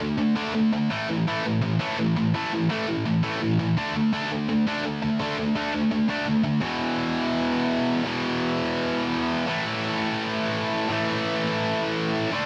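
A dry, close 1970s-style studio sound with light reverb frames this relentless, dark metal passage, cut from a longer piece, in which a solo electric guitar, double-tracked, bright and high-gain, sits up front playing picked, distorted power chords that move from D5 and A5 to E5 and A5 after 6.6 seconds.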